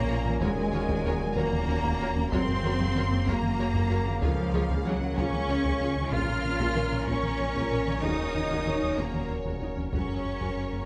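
A moderate scoring-stage reverb wraps this relentless, vast cinematic excerpt, a hybrid orchestral and electronic film cue moving at 63 BPM in a straight 6/8 over Ebm7, Gb, Db and Bbm. An up-front, lush cello section anchors the low end alongside a dark, very quiet double bass section, a round analog bass riff and a deep sine sub bass, while distant taiko hit with hard sticks from 0.3 seconds. Above, a background violin section holds the melody on a single high note as a second violin line, with focused vibrato, carries a higher counterpart. Violas accompany while mellow French horns and bright trombones sustain chords beneath a tine-like FM synth pluck arpeggio and a soft, felt-muted upright piano with audible action noise.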